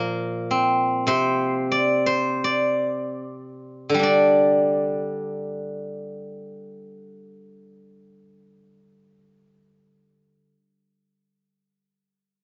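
Free and rubato over a loose 2/4 pulse, this contemplative, longing fragment of Chinese traditional solo music slows through its first 4.0 seconds before moving into a new passage. A lone acoustic steel-string zither, played with fingerpicks, carries everything from Bb2 up to D5 with a silvery, ringing tone set up front. A moderate studio reverb adds a short, soft room glow, and the top end is gently rolled off in this brief cut from a longer piece.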